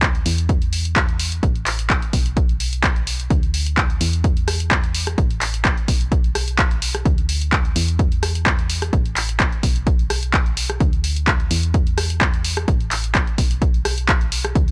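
A lightly swung 4/4 groove at 128 BPM drives this uplifting, feel-good piano house excerpt, where an up-front, tape-warm electronic kick and a punchy analog drum machine with handclaps, hi-hat and rim click ride over a round, dark FM bass with a fast attack, decaying notes, tube saturation and sidechain pumping, all captured as a dry, gritty hardware recording.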